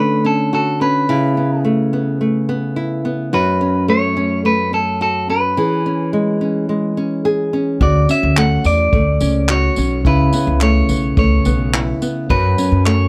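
A straight, easy-going 4/4 pulse at 107 BPM carries this sunny acoustic pop clip in A major, where a fingerpicked nylon-string guitar sets out the Dmaj7, Aadd9 and F#m chords from the start while a clean, picked electric guitar sings the melody close up. At 7.8 seconds a woody, thumpy pizzicato upright bass on gut strings arrives, along with a dark, smooth vintage brush kit that adds a punchy kick, handclaps and tambourine. The room sound stays dry and intimate, cut from a longer piece.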